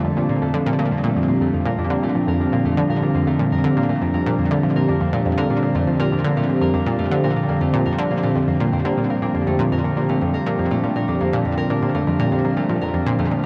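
Bathed in a huge ambient reverb with a 7.5-second tail, this luminous, expansive fragment of sequencer-driven space music at 121 BPM in Bb major sets an evolving, full-bodied pad of sawtooth and sine with a sub octave and chorus, holding sustained chords alongside a ringing, fingerpicked concert harp whose filtered, delayed arpeggios sit up front beside a round, detuned analog pluck that repeats a low riff with a bright, fast attack, chorus and delay.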